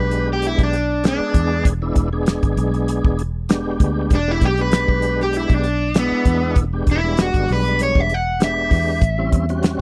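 An overdriven semi-hollow guitar takes a swaggering solo up front, its picked tone hollow and warm, across this rollicking straight-eighth soul blues excerpt that rides an E7#9 chord before moving to A7#9 at 9.0 seconds. Underneath, a tonewheel organ fills in with a full, lightly overdriven sound, key click, chorus vibrato and a slow rotary speaker, while a fingered electric bass adds dark, round, foam-muted low end. A damped 1970s drum kit enters at 0.1 seconds with a fat snare, tight kick and hi-hat, its rolled-off top sitting up front in a dry, close small-room studio sound.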